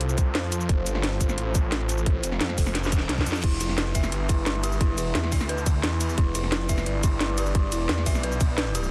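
A dense, heavily limited modern master in a digital ambience carries this tense, aggressive fragment of dark technical drum and bass at 175 BPM in E phrygian, where a snarling, growling overdriven saw bass and a tight, up-front electronic kick drive a layered kit of cracking snare, metallic hi-hats, ride, crash and shaker beneath a moody analog pad with chorus, phaser and sidechain pumping over F moving to Em, as a drum fill from 2.8 s and a very quiet reverse cymbal at 2.9 s lead into an eerie, inharmonic FM bell arpeggio that enters at 3.4 s with chorus, dub echo and pumping.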